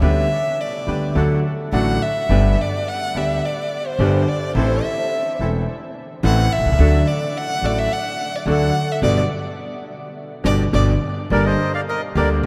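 A rubato tango in 4/4 at 106 BPM, melancholic and dramatic in G major, opens with a close, expressive violin solo, sung with vibrato and portamento over a smooth, vintage-toned concert grand piano, woody pizzicato upright bass and bright, reedy bandoneon stabs carrying tape echo. The band lands an accent from 9.0 seconds, and at 11.3 seconds the harmony turns to G minor as a dark, smooth bandoneon melody enters in the background. All of it sits in a vast cathedral reverb, and the excerpt is cut from a longer piece.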